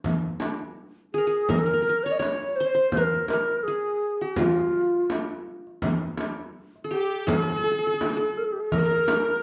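A wet, large-studio reverb surrounds this live-in-one-room take of longing, melancholic Arabic maqam ensemble music at 83 BPM in straight 4/4, where a deep, distant frame drum and a crisp, small metal-shell darbuka carry the percussion from the start, a breathy, bright low ney with vibrato leads up front from 1.1 seconds over a triple-strung qanun plucked with fingerpicks, and a clear chamber violin section with light vibrato and a biting, earthy tone joins the second line at 6.9 seconds.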